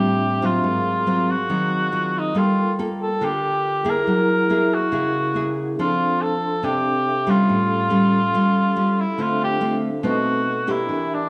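A straight 4/4 pulse at 140 BPM carries this short bossa nova in D minor, with a sophisticated, sunny mood across its 11.3 seconds, cut from a longer piece. Up front, a fingerpicked nylon-string guitar supplies a full-bodied, classical-style accompaniment, moving through rich harmonies such as Dm11, Gm9, F6 and A7b13 before settling on Dm7 and B7b9. The cor anglais carries the melody as a mellow solo voice with light vibrato, sounding distant and roomy in a classical manner. Lower in the mix, a vibraphone played with medium mallets adds a dark, smooth, metallic ring colored by fast motor vibrato. A wet recital-hall reverb of 1.5 seconds gives the recording the open resonance of a church or concert hall.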